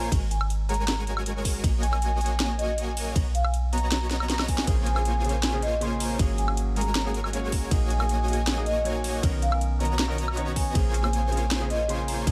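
Future bass at 158 BPM in a half-time feel, this dreamy, emotional passage in Bb phrygian is cut from a longer piece and tuned slightly flat of standard pitch. A vibraphone played with soft mallets carries the melody, its ringing, metallic tone softened by a slow motor vibrato and a vintage, band-limited quality, with tape echo trailing its notes. Beneath it, a huge, thick supersaw built from detuned sawtooth unison layers with a sub octave plays a compressed, sustained riff, while a deep, boomy 808-style bass sits up front with a fast attack and decaying sine body. The vibraphone, supersaw, bass and later the piano all pump under sidechain compression, alongside a hard-clipped electronic kick and a trap kit of sharp snare, metallic hats, ride, and woodblock, with a drum fill from 4.1 to 4.7 seconds. At 4.7 seconds a warm grand piano joins as accompaniment with its own tape echo, while the harmony cycles through Ab9sus4, Gb69/Bb, Bmaj9 and Bbm9 chords in a dry, close mix.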